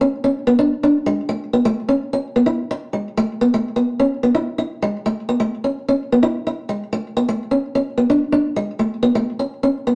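A wet club reverb surrounds a lone fingerpicked acoustic archtop guitar, which sits up front with a boxy tone and audible finger squeak. The piece is carefree highlife in A major at 128 BPM in a straight 4/4, with the guitar carrying the solo line through a narrow middle register from start to finish. This short cut from a longer performance moves into a new section at 2.5 seconds and keeps its warm mood to the end at 9.9 seconds.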